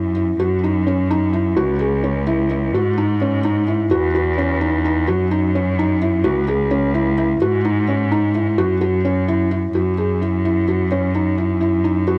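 This restless, pensive piece of contemporary chamber music in 5/8 opens with a felt-muted upright piano and a bowed cello sounding together from the very start, cut from a longer work. The piano plays arpeggios in a narrow middle range, its thick felt giving a soft, dark, intimate tone with audible action noise, and a tape echo trails its notes. Beneath it, a single cello carries the bass line, clear and smooth with vibrato, sitting distant yet still up front. At 257 BPM counted in eighths with a straight feel, the harmony moves through F#5, C#m, G#5 and Esus2 before the chords drop away at 9.7 seconds, where a new section begins and runs to the end at 12.2 seconds. The whole recording carries a moderate spring reverb in a small room and the worn character of old cassette tape, with a warbling pitch drift that adds to the uneasy mood.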